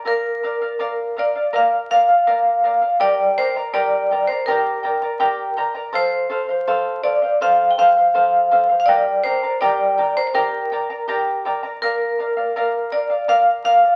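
Andean folk at 82 BPM in a straight 4/4, festive yet wistful, this brief cut from a longer piece sets a ringing, metallic vibraphone struck with hard mallets, its fast motor vibrato and band-limited, vintage tone up front, over a bright, shimmering fingerpicked charango with double strings, some octave-doubled, moving through Bb, Gm and F in moderate studio reverb beneath the crackle of a very old 78 rpm record.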